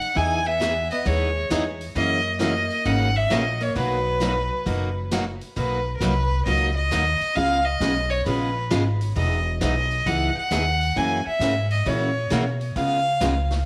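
Down-home and cheerful, this western swing country fragment sets a clear, focused fiddle melody with light vibrato and tape echo up front over a woody, thumpy pizzicato upright bass, a bright, full-bodied picked steel-string acoustic guitar, a roomy big-band drum kit with a boomy kick in the background, and a dark, clean hollow-body jazz guitar whose second line drops out at 5.1 seconds, all set in a moderate plate reverb.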